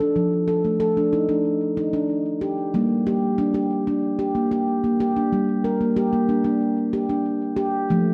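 A solo handpan carries this short, hypnotic world meditation piece, its stainless steel tones ringing out mellow and up front under soft fingertips across a range from F3 to Bb4. The music sits in G minor at 93 BPM in a straight 4/4, and the brief 8.1-second fragment, cut from a longer work, moves from an F chord to G minor at 2.7 seconds. Tape echo trails each struck note, and the whole is set in a wet echo chamber with a 1.7-second reverb tail that lets the tones bloom and linger. The production is dark and warm, and the instrument is tuned to A4 = 439 Hz, giving the meditative mood a gently settled, inward quality.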